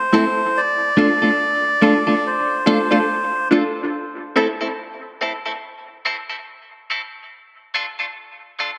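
Soaked in a moderate spring reverb with a 2.6-second tail, this meditative, hypnotic reggae fragment at 71 BPM opens with an up-front, reedy, breathy melodica carrying the tune through dub echo until 3.5 seconds, while a twangy, compressed clean electric guitar picks high-passed accompaniment and deep, detuned filtered dub chord stabs with phaser and echo sound over the Am and Dm changes until 4.6 seconds, before a break from 3.9 seconds, under a filter sweep running from 0.6 seconds, leaves the guitar carrying on to the close.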